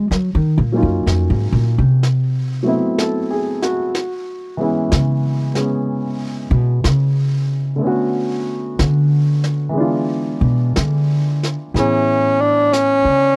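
A woody, thumpy upright bass on gut strings carries the lead in this late-night, romantic jazz ballad excerpt, taking a pizzicato solo from the start to 11.8 seconds over a natural-sounding baby grand piano and a vintage brush kit playing snare and hi-hat with a rolled-off top. The tempo is a slow 62 BPM in 4/4 with a swung eighth-note feel in A major, the harmony moving through minor seventh chords and an E7b9 before resolving to Amaj7. At 11.8 seconds a dark, breathy tenor saxophone enters with subtone, scooped notes, light vibrato and tape echo, all captured in a dry, close 1970s-style studio sound.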